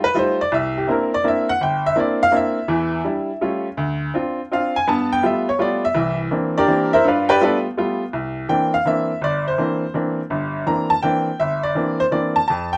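A bright, woody upright piano opens this relaxed, swinging jazz waltz excerpt alone, sitting up front with a polished, long-sustaining tone across a range from G1 to Bb5. Its solo runs through the first 8.1 seconds over a progression moving from F9 and C9 through Em7, Aaug7, Dm7 and G9, before a new section begins back on C9. A moderate studio reverb gives the playing a gentle sense of space.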